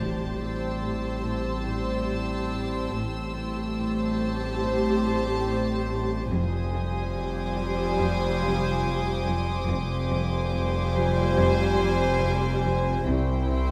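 Cinematic and eerie, this ominous cue at 71 BPM in 4/4 opens on a barely audible dark impact and a faint hard-mallet timpani hit, then settles into sustained strings moving from Am7 to Fmadd9 before reaching C at 13.1 seconds. Floating sul tasto violins carry a high melody, a second line and an upper texture. Lush, woody violas with vibrato provide accompaniment, while mellow French horns and a glassy, beating glass harmonica hold chords in the background. Cellos play a soft riff above dark double basses, a quiet distant cello bass and a thick, saturated sub bass drone, all set in a scoring-stage reverb.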